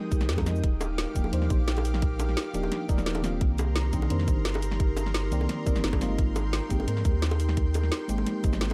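Warm and uplifting, this short excerpt of liquid drum and bass rolls along in a straight 4/4 over a chord cycle moving from Fm9 through Ebmaj9 and Cm7 to Abmaj9. A soft, round FM electric piano carries the accompaniment with a faint noise layer, colored by chorus, phaser, cassette tape and digital delay, while a lush, detuned unison pad of sawtooth and square waves holds sustained chords with a slow attack, long release and chorus. A dark, metallic vibraphone played with medium mallets traces arpeggios through digital delay, its ringing tone shaded by slow motor vibrato. From 0.1 seconds a deep, round sine sub bass sits up front beside a tight, layered electronic kick, and the drum kit adds a woody snare, bright hi-hats and cabasa, both re-recorded in a small room. High-tuned, compressed and saturated bongos join at 0.4 seconds, and the whole piece sits in a dark, warm digital ambience.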